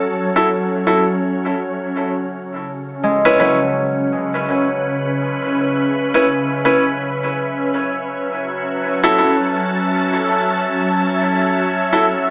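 In free time, this deep, hazy ambient excerpt sets a pure, detuned organ-like pad with chorus and a filter sweep alongside woody upright piano stabs through dub echo, while a fingerpicked concert harp rings out arpeggios with gritty 12-bit texture from 3.0 to 7.3 seconds, all bathed in wet spring reverb and a small-speaker sound as the chords move from F#m7 to C#m7 and back.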